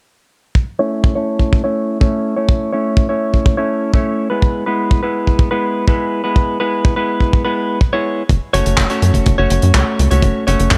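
Romantic and playful, this short italo disco excerpt moves at 124 BPM in a straight 4/4, centred in A major. A dry, tight acoustic kick drum sits up front from 0.6 seconds, joined almost at once by a clean, direct-recorded electric guitar playing picked, compressed stabs through a low-pass filter and tape echo, with a filter sweep running across its whole span. The chords shift from A to E and then to F#m. At 8.3 seconds a punchy sawtooth-and-square sequencer bass arrives up front, its fast attack and decaying filter pluck giving a driving pulse, alongside a damped 70s drum kit adding dry handclaps and hi-hat. Small room ambience colours the drums, and studio reverb fills out the mix.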